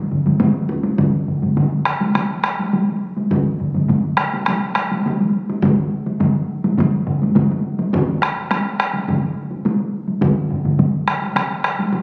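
Japanese traditional taiko drumming drives forward at 104 BPM in a straight 4/4, its mood ceremonial and driving in this brief excerpt cut from a longer piece. A full taiko ensemble struck with hard sticks sits up front in a live room, carrying the loudest part of the mix from 0.3 seconds to the close. Around it, several solo taiko drums add weight: one played with heavy sticks is heard close and intimate, another with heavy sticks rings up front in the live room, and a third, hit with hard sticks, takes on a compressed, saturated edge. The solo drums begin almost at once, and one of them drops out at 10.4 seconds while the ensemble carries on. The whole performance sounds captured on a phone in the room, bathed in the lingering reverb of a recital hall that gives the drums a booming, resonant spaciousness.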